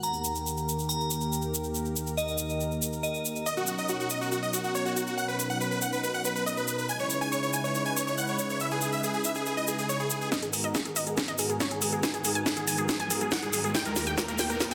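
Uplifting trance at 140 BPM in G# minor, driving and emotional, this excerpt opens on a lush, airy unison pad pumping under a filter sweep, a grainy egg shaker and a crystalline FM bell with chorus, phaser and delay that stops at 3.4 seconds, before a huge, euphoric supersaw lead takes the melody up front through Bmaj7 and C#m7. At 10.3 seconds the build-up arrives: an overdriven house kit with a cracking snare and metallic hats plays a fill, a punchy kick sits in the background, and a detuned, ring-modulated pluck with a cassette-tape tint joins while filter sweeps run across the supersaw and pluck. A faint riser enters at 12.2 seconds over G#m7 resolving to D#, all set in a moderate hall reverb and a dense, heavily limited master.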